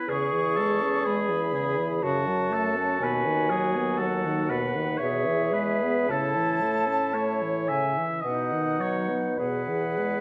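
In a slow, rubato 3/4 that moves between 50 and 63 BPM, this romantic wind quintet movement in E major unfolds with a serene, warm mood. The airy silver concert flute carries the melody from 0.1 seconds, its tone touched with vibrato and set at a slight distance, while the oboe sings a second line with a warm sound. Beneath them, the bright, softly attacked clarinet and the French horn, smooth-topped and lightly vibrato, fill in the accompaniment. The dark bassoon anchors the bass, its light vibrato blooming in the space of the hall. The harmony passes from C#m/E through F#m and B/D# to E, then moves to A and B before settling on E at 9.4 seconds. A generous recital hall reverb surrounds the ensemble, giving this short cut from a longer piece a gentle, resonant glow.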